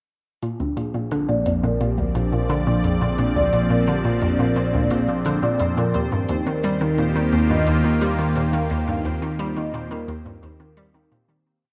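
Soaked in wet spring reverb and cassette-tape echo, this cosmic, expansive piece of sequencer-driven space music in Eb major moves at 87 BPM over Bb and Eb chords: a swirling, detuned phased analog pad holds slowly shifting chords up front, a bright, bouncy hollow square pluck repeats an 8-step riff through chorus, phaser and delay, a warbling vintage analog drone sustains the root bass, electronic hi-hat and high congas tap out a light machine pulse with metallic hats, a very quiet pulsing gated texture holds a high note, and a mellow vibraphone with soft mallets and fast motor vibrato spins delayed arpeggios in a 12-step loop drifting against the bar under a filter sweep, all fading out from 7.8 s to 11.5 s.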